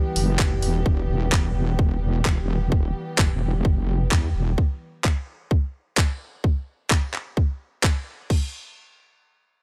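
A dark chamber string section opens this bouncy, swaggering bass house excerpt at 129 BPM in E minor, its intimate, bowed sul tasto chords sustained with light vibrato and sidechain pumping, joined almost at once by a heavy, saturated wobble bass thickened with chorus over a single Em chord. A tight electronic kick and a garage drum kit of bright hi-hats, handclaps and crash cymbal sit up front, driving a swung 16th-note groove in a small room ambience. The strings stop at 4.5 s and the bass at 4.6 s, leaving the drums to carry on until 8.4 s.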